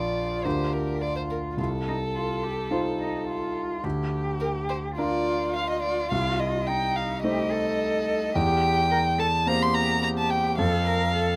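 Flexible rubato phrasing sits over a steady four-beat metre in this quick, spirited and graceful classical-period movement for piano trio, a fragment cut from a longer piece. The violin carries the melody from start to finish with a dark, intimate tone, played sul tasto with light vibrato, a soft attack and a smooth top, sitting up front and close. Beneath it a single cello bows a second line, warm and expressive, with vibrato and portamento, heard from a more distant position. The concert grand piano supplies the accompaniment, polished and present with deep bass, long sustain and audible action noise, placed up front as well. The harmony moves from Bb/D through F7/C, Adim/C and C7/E before settling on F at 10.6 seconds. Close, detailed microphones and light reverb keep the trio's sound clear and intimate.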